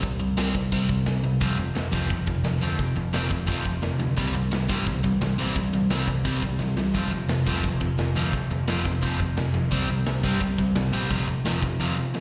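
Energetic and rowdy, this punk rock excerpt in F major drives along at 173 BPM in a straight 4/4, with an up-front, crunchy overdriven guitar riff carrying slapback echo, a growly picked bass, and a big rock drum kit with a punchy kick and medium-tuned snare, before a second, brighter overdriven guitar riff with its own slapback echo joins at 1.4 seconds and a drum fill lands at 6.6 seconds, all captured as a live gig heard through the venue's PA.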